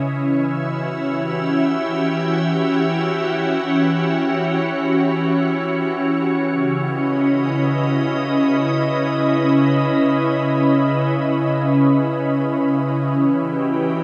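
Floating in free time, this ambient passage is cut from a longer piece and carries a spacious, melancholic mood. A single soft additive pad with an organ-like, pure sine character plays alone until 14.0 s, its detuned voices thickened by ensemble chorus, built-in reverb and delay. Its sounds arrive on a slow attack, sustain calmly and fade on a long release, with a bright tone placed up front. The harmony moves from Em6 to C#m7 at 6.5 s, opening a second passage, before Em6 returns at 12.9 s. A huge, wet ambient reverb with a 9.4-second decay soaks the dreamy mix.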